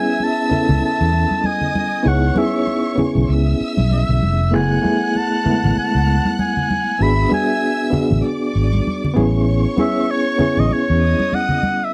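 A dry, close 1970s-style studio sound frames this short cut from a lush, smooth and bittersweet soul piece at 97 BPM in 4/4, with a swung sixteenth-note feel and chords moving from Amaj7 through C#m7, F#m11 and E7/G# back to Amaj7. Up front, a clear, classical-style oboe carries the melody with light vibrato over a gritty, reedy overdriven electric piano with fast tremolo through a combo amp, and a round, punchy fingered electric bass enters at 0.5 seconds. A bowed studio violin section adds an expressive, vibrato-rich second line, while bright, close congas with a thin skin come in at 0.2 seconds.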